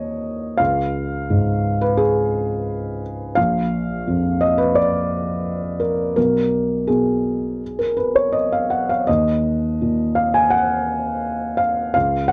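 A neoclassical minimalist piano piece in Eb minor, this short fragment cut from a longer work feels wistful and reflective, moving at 84 BPM in 4/4 with a loose, rubato pulse. A felt-muted upright piano plays alone for the full 12.3 seconds, its tone soft, mellow and dark, with the thick felt lending an intimate hush. The instrument sits up front in a modest booth with a short, close ambience, spanning from Bb1 low in the bass up to Ab5. The harmony opens on an Eb5 chord and drifts through Db to Bb, passes through a moment of unharmonized playing at 6.2 seconds, and settles on Eb minor at 9.1 seconds. Over it all hangs the character of worn, old cassette tape, whose warbly pitch drift gives the recording a faded, memory-like quality.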